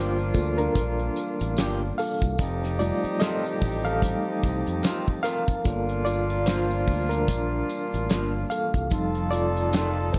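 Light reverb and a small-room ambience frame this cinematic, silky slice of lush 1970s-style soul, which swings gently in 4/4 over a Gm7 to F7 vamp. A reedy, worn, slightly out-of-tune electric piano with fast tremolo takes the solo throughout, supported by a soft, flute-like tonewheel organ turning slowly in the background and a lo-fi, slightly broken-up guitar riff. Distant, roomy horn stabs with tube saturation and analog delay join a bright, punchy fingered bass, a dry drum kit with a fat snare and tight kick entering at 0.2 seconds, and a jingly tambourine arriving at 0.4 seconds.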